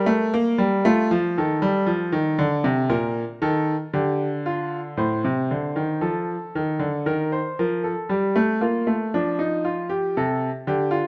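Close, detailed microphones put a clear grand piano up front in a recital hall with moderate reverb, so each note carries a long sustain while the room adds gentle depth. This is a short cut from a longer classical piece: a baroque-style two-part invention for solo piano in straight 4/4 time. The mood is serious and driving, with the two voices sounding in a range from A2 up to C5 on a smooth, somewhat vintage-toned instrument. The opening phrase moves from a rootless Eb through F7 to Bb. From 5.0 s a new section passes through F/A and Eb before settling on Dm/F as the recording closes at 11.1 s.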